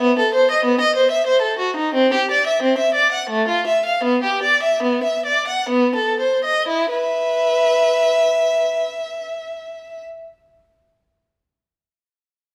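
A single bowed violin, rich and expressive with vibrato and portamento, opens this grave yet flowing baroque-style suite movement in a rubato triple metre, slowing from 1.0 to 6.7 seconds before a new section begins, its up-front tone also sounding distant in a reverberant recital hall until it stops at 10.0 seconds in a passage cut from a longer piece.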